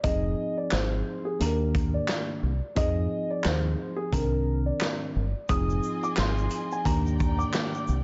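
Boom-bap hip-hop in F dorian at 88 BPM, this short, reflective and moody cut from a longer piece sways on a 16th-note swing, tuned slightly below standard pitch. A dark upright piano carries the melody from the start, woody and mellow with audible action noise, a slight detune and long sustain, while a worn, slightly out-of-tune tine electric piano fills in the accompaniment beneath it. A deep dub fingered electric bass sits up front with a round, punchy tone, and a vintage acoustic drum kit with a punchy kick, a medium-tuned snare, handclaps, hi-hat and shaker has a rolled-off top and a mid-forward studio-room character. The harmony moves through Fm7, Ebmaj7 and Cm9, and at 5.5 seconds a lush, bowed string section enters with expressive vibrato and a smooth top, joined by a grainy egg shaker tucked far in the background. The mix is dry, with little reverb and a dusky, filtered top end that keeps the whole piece close and intimate.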